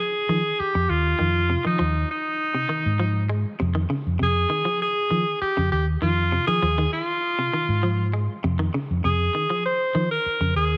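An edgy, punchy alto saxophone opens this funky, defiant afrobeat excerpt in F minor at 99 BPM, carrying a forceful, vintage-toned solo melody with light vibrato over a bright, clean semi-hollow guitar picking tremolo-treated arpeggios. A dark, round fingered electric bass arrives at 0.3 seconds, sitting up front with an amped edge as the band holds a single Fm7 chord. A moderate plate reverb gives the short cut a roomy sheen, with the sax and bass leading the mix and the guitar set further back.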